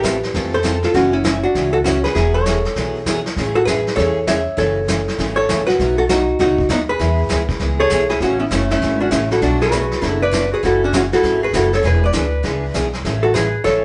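A swung 4/4 groove underpins this cheerful country and western swing excerpt, with a vintage brush kit giving a punchy kick and a rolled-off top beneath a woody, thumpy pizzicato upright bass on gut strings. Up front, a dark, clean, compressed hollow-body jazz guitar carries the melody while a bright, full-bodied picked jumbo acoustic guitar plays accompaniment. At 7.8 s a clear clarinet with light vibrato and scooped notes adds a jazz-style second line, and the band sounds live in one room with a wet studio reverb.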